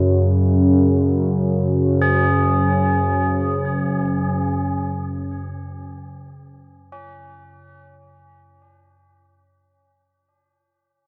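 Drenched in a huge, cavernous reverb, this unsettling dark ambient drone in free time is cut from a longer piece and fades out across its 9.3 seconds, with an evolving analog drone of ring-modulated, sawtooth-edged tone and chorus sitting low beneath soft, solemn tubular bells that ring out metallic arpeggios through delay over an F#sus2 chord.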